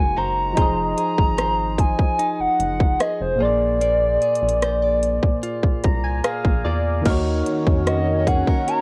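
A hollow, woody clarinet-like synth lead carries the melody up front in this sensual, late-night contemporary R&B excerpt, shimmering with chorus over soft, round electric-piano-like keys, clean direct-recorded guitar arpeggios and a rubbery, bouncy square bass. Trap drums with a hard-clipped kick, metallic hats and rim clicks enter at 0.6 seconds, carrying a cassette-tape grit in a moderate studio room, while the keys add a fill before the harmony settles on Ebm7 at 7.1 seconds. There, an FM synth chime rings inharmonically in the background, and a moment later a lush, detuned unison pad pumps beneath it with chorus and phaser as the passage is cut off.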